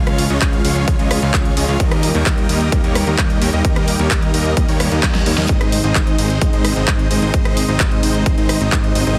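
Heavily compressed and radio-loud in a digital space, this brief excerpt of triumphant, euphoric festival progressive house runs at 130 BPM in Ab major, with a huge, detuned supersaw riff up front carrying tape echo and vibrato over a fat, saturated analog bass and a lush, chorused pad in the background, all three pumping with sidechain. An overdriven big-room drum kit with a massive snare, handclaps, hi-hat and rim click joins at 0.1 s, followed at 0.4 s by a punchy, layered electronic kick. A reverse cymbal rises at 4.8 s into a drum fill as the chords move from Db through Eb to land on Ab at 5.5 s.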